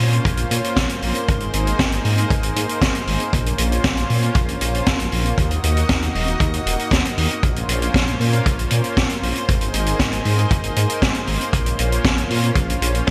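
A straight 4/4 synthwave groove sets a nocturnal, moody tone in this short cut from a longer piece, where an up-front street-band kit of hi-hat, high-tuned snare and toms, treated with gated reverb, is soon joined by a boomy kick, while a deep, rumbling detuned saw bass with tube saturation and a thick, airy unison pad with chorus both pump to the sidechain beneath Bbmadd9, Abadd9 and Ebm chords, all set in a lush hall and bright 1980s-style digital production.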